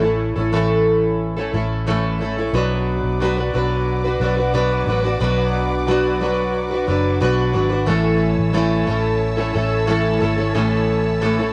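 A double-tracked, fingerpicked acoustic guitar sits up front over a dark, round, foam-muted electric bass as this carefree, sunny pop fragment opens at 90 BPM, moving from A to B minor. At 2.5 seconds a lush studio string section enters with sustained, bowed chords played sul tasto with vibrato, adding a smooth, intimate layer high above the guitar before the harmony returns to A at 7.9 seconds. A moderate spring reverb gives the whole a sense of space.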